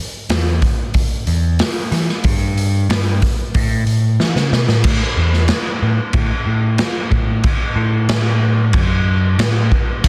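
A straight 4/4 pulse from a raw garage drum kit, up front with a punchy kick, medium-tuned snare, hi-hat, crash cymbal and a dark, rolled-off top in a bright stone room, drives this bittersweet, anthemic quiet-loud alternative rock excerpt alongside a growly, overdriven picked electric bass, with a drum fill at 4.2 seconds leading into a new section at 4.8 seconds, all in a dry, dense and heavily limited modern master.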